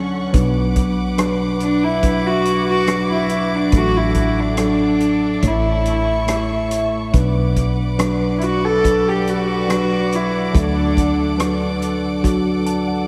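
A bowed solo cello carries the melody from 1.6 to 11.4 seconds, sitting up front yet sounding distant and floating, its soft-attack sul tasto tone pure and touched by analog delay. This tender, heartfelt acoustic folk-pop ballad moves at a slow 71 BPM in a straight 4/4, in D major, and is a fragment cut from a longer piece. A mellow, clean tine electric piano provides direct, up-front accompaniment. A rich chamber string section holds sustained chords in an intimate, vibrato-laden blend. Underneath, a woody, round, hollow-bodied fretless electric bass anchors the low end, while a loose indie drum kit with a punchy kick, hi-hat and rim click adds a natural studio-room feel. The harmony moves through Bm, D/A, A, Bm and D, and a lush hall reverb with a 2.9-second tail soaks the whole mix in a dreamy wash.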